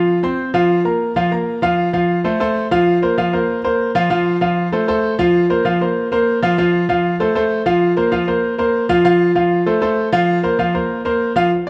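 Sunny and danceable, this short latin piano piece moves at a brisk 194 BPM in a straight 4/4, cut from a longer performance. A clear, intimate grand piano plays solo from start to finish, ranging from F3 to C6 and sitting up front with natural tone and audible action noise, as it alternates between Bbsus2 and F throughout. The dark production places the instrument in a wet, large studio reverb, and after a brief opening the second section begins at 1.6 seconds and carries through to 11.5 seconds.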